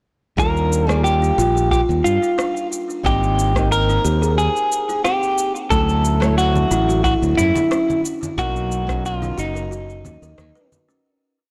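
A blown-out, overdriven recording with light reverb and small-room ambience carries this smooth sunset chillout piece, whose straight groove begins at 0.4 seconds and fades out from 7.5 seconds. An up-front, compressed clean electric guitar plays a motif-based melody through digital delay. Beneath it sit held, rootless flamenco guitar chords with syncopated pushes, a buzzing, woody kalimba arpeggio and a growly, punchy fingered bass line in dub style with tube saturation. A soft electronic kick, a tape-warm cabasa and rim-click lounge beat, and ringing congas entering at 6.6 seconds drive the rhythm as the chords move through major-ninth harmonies.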